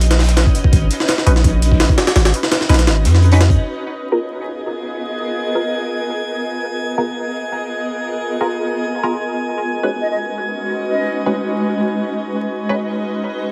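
Vinyl crackle and a light, small-room reverb frame this nostalgic, dark drum and bass and jungle passage at 168 BPM in G# dorian, cut from a longer piece. It opens on a drop, where an overdriven, pitched-up sampler-style kit with a thumpy kick and high-tuned snare sits up front over a deep, mellow 808-style sine bass and a very quiet, crunchy acoustic breakbeat kit with a rolled-off top; all three stop at 3.6 seconds. A cloudy, detuned granular pad holds sustained chords throughout, moving from Badd9 to G#m69 and then Badd9/G#. In the background, a muted, full-bodied sawtooth dub stab plucks chords through phaser, subtle chorus, 12-bit sampler grit and dub echo. After the drums fall away, a glassy texture of drifting overtones floats high above, and a pure, very quiet concert flute with vibrato sounds a single D#5 at 10.0 seconds.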